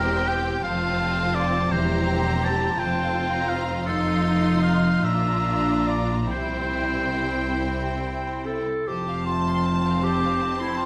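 Tender and warm, this slow romantic orchestral movement in F major sways gently in 6/8 with a rubato feel, as a smooth, close violin section carries the high melody while a second, lush violin section and an up-front oboe with light vibrato weave supporting lines, the oboe giving way to a clear, roomy clarinet that enters at 7.6 seconds. Beneath them, a focused viola section sits in the background, a bright concert harp rings out arpeggios, and a cello section and rich double bass section anchor the bass. It is all bathed in a recital hall reverb, a short passage cut from a longer piece.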